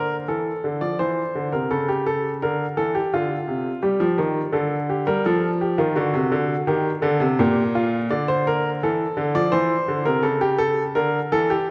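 A solo baby grand piano opens at once with a baroque-style two-part invention in a classical vein, its tone clear and natural as it sits up front in the sound. The mood is serious and solemn, moving at 84 BPM in 3/4 with a straight feel. The harmony centres on D minor, passing through chords such as C/E, A7/C#, Gm, F and D7 before returning toward A7/C# near the close of this 11.7-second passage. The piano ranges from Bb2 to D5, and its long sustain lets its notes ring. A wet scoring-stage reverb with a 2.1-second decay surrounds the instrument, giving it a spacious, hall-like bloom. The passage is cut from a longer piece.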